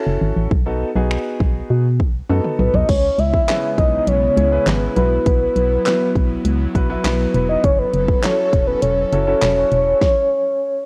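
Dance-pop at 101 BPM in 4/4 with a straight, driving and energetic feel, heard as a short cut from a longer piece with a home-cassette character and a digital ambience. A concert grand piano with audible action noise plays accompaniment from the start, pumping against the kick alongside a hollow, percussive FM bass with an organ-like tone and dark, fast-decaying notes, both moving through F#m7 and B7. The pop drum kit, electronic and layered with a punchy kick, fat snare, finger snaps, handclaps, hi-hat, toms and crash, sits up front with a cassette-tape colour and closes the opening with a fill from 2.3 to 2.9 seconds. At 2.6 seconds a soft, round octave-layered synth lead with a sub octave enters to carry the melody, with chorus, tremolo and vibrato. At 2.9 seconds the music shifts to C#m7, Bsus4 and back to F#m7, as a breathy, airy pad with a slow attack and warbling vintage detune swells in beneath the lead with chorus and sidechain pumping. 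The piano, bass and pad stop at 10.0 seconds, the drums trail off by 10.2 seconds, and the lead sounds on until 10.9 seconds.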